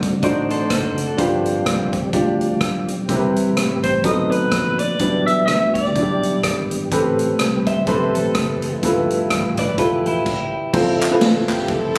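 An uptempo gospel groove opens at 126 BPM in a swung 4/4, with a clear concert grand piano comping up front over a punchy fingered electric bass and a swinging big-band drum kit with a punchy kick and medium-tuned snare, while a mellow, flute-like tonewheel organ sustains chords in the background through a fast rotary speaker and chorus vibrato. A clean, picked electric guitar with tape echo adds a brief second line at the very start, and a clear, vintage-toned alto saxophone takes the melody from 3.8 to 6.7 seconds with vibrato and scooped notes in a jazz style. The harmony moves through rich dominant and seventh chords such as D7b9, Cmaj7 and Am9, and the guitar returns near the end of the first section before the band hits a stop. After that break, crisp, dry group handclaps arrive, and a lush, bowed string section enters up front with a soft attack and sul tasto sweetness over the Fmaj7 chord that opens the second section. 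Recorded on a phone in the room with club reverb and compression, the cut-off passage feels soulful and hopeful.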